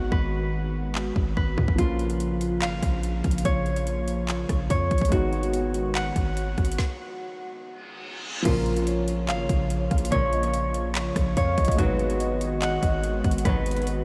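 A brilliant, ringing Celtic harp picks out arpeggios through this dark, melancholic trap excerpt, its tone softened by a low-pass filter and trailed by tape echo. Underneath, a punchy 808-style bass hits hard with a fast attack and decaying sine body, while an up-front electronic trap kit brings a hard-clipped kick, woody snare, metallic hi-hats, handclaps, rim clicks and crash cymbal in a half-time feel at 144 BPM in Bb phrygian. A mellow grand piano with audible action noise sits in the background, and a hollow, flute-like pad holds soft chords with chorus as the harmony moves between Abm7 and Bbm. After a stop at 6.8 seconds, a reverse cymbal leads into a new section at 8.5 seconds, where a velvety synth lead with vibrato, chorus and tape echo joins alongside very quiet, bowed sul tasto string stabs. The whole mix is soaked in a huge ambient reverb, giving it a dreamy atmosphere.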